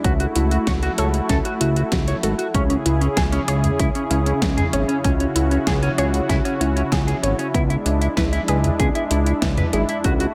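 Synthwave at 96 BPM in C# phrygian, nocturnal and driving, this short cut from a longer piece runs through F#m7/C#, C#m and E7/C# over a fat, saturated sawtooth bass sitting up front, a punchy overdriven electronic kick, and a pop drum kit with a fat snare, metallic hats, toms and gated reverb. A smooth detuned analog pad holds sustained chords with chorus and sidechain pumping, while a warbling, lo-fi pluck arpeggiates in the background through chorus and digital delay. A dark, clean electric guitar plays a riff bathed in lush chorus and delay, all set in light digital ambience.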